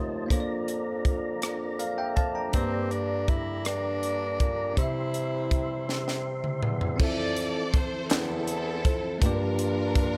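Swaying in a slow 6/8, this uplifting, soulful gospel excerpt sets a bell-like tine electric piano with lush chorus, a round tonewheel organ turning through a slow rotary speaker, a punchy bassoon carrying the bass and very quiet mellow French horns over a crisp, up-front fusion drum kit with dark cymbals, while a raspy, growling tenor saxophone takes the melody from 2.5 s, a drum fill leads to a distant, bowed string section carrying the tune from 7.0 s, and a brief vintage handclap sits in the background at 8.1 s, the whole mix dry and close.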